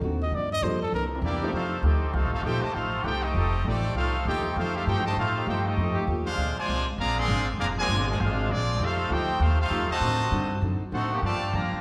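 Brassy and joyful, this swinging jazz excerpt in F major at 198 BPM opens with a close-miked trumpet solo and a brief, boxy upright piano before, at 1.2 seconds, a bright trumpet section takes over the melody over a nasal, straight-muted trombone section's second line and sustained trombone section chords set in the background, all carried by up-front pizzicato upright bass, a dark picked steel-string acoustic guitar and the lush reverb of a recital hall.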